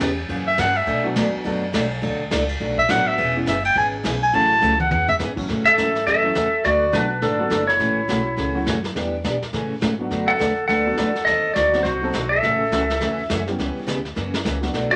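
Swinging and cheerful, this western swing country piece, cut from a longer performance, moves at a brisk, bouncy shuffle. A breathy clarinet, up front with light vibrato and scooped notes in a jazz style, takes the opening solo over a bright, full-bodied dreadnought acoustic guitar whose picking carries audible finger squeaks. Underneath, a woody pizzicato upright bass and a vintage brush kit, dark and smooth with a tight kick and rolled-off cymbals, keep the groove easy, while a boxy upright piano fills in the harmony. After a short drum fill at 4.6 seconds, a clean, twangy lap steel guitar enters at 5.7 seconds to take the melody, compressed and sitting forward in the mix, as the clarinet carries on as a second line. Moderate studio reverb gives the ensemble a natural room sound, and chords rich in sixths and sevenths keep the harmony lively.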